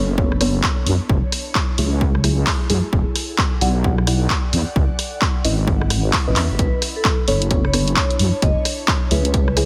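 A deep, soft wobbling bass sits up front in this late-night, soulful two-step garage excerpt, with dark, detuned chord stabs colored by chorus, phaser and tape echo, while an ethereal, airy pad fades in behind them with sidechain pumping. A dry, punchy kick and an analog drum machine of handclaps, hi-hat and rim click carry a swung groove, with a drum fill at 6.4 seconds. At 6.6 seconds a metallic, ringing vibraphone enters with slow motor vibrato and tape echo, all set in light digital ambience with a heavily compressed, radio-like sound.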